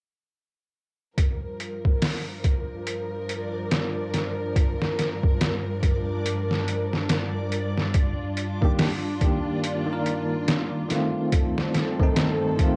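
Smoky and cinematic, this trip hop excerpt pairs lush, bowed string chords with a muffled, overdriven sampler-style drum kit and its thumpy kick from 1.2 seconds, adds a reversed, dreamy swelling texture in the background from 2.3 seconds, and brings in a bell-like, barky electric piano with tremolo and tape echo at 8.6 seconds, all carrying the dry, homemade colour of cassette tape.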